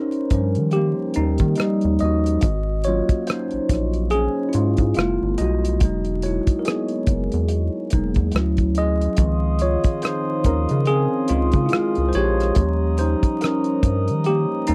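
Warm and relaxed, this short neo-soul and R&B cut at 71 BPM in Db major sways on a swung sixteenth feel, with a bell-like tine electric piano soloing through a phaser over cloth-damped, thuddy drums of hi-hat, tight kick and rim click, a rubbery, hollow square bass bouncing beneath, and a glassy, ethereal glass harmonica entering at 9.2 seconds with sustained chords, all in a dry, close 1970s-style studio sound with vinyl crackle as the harmony drifts through lush extended chords from Eb7 through Dbmaj9 and back to Eb7.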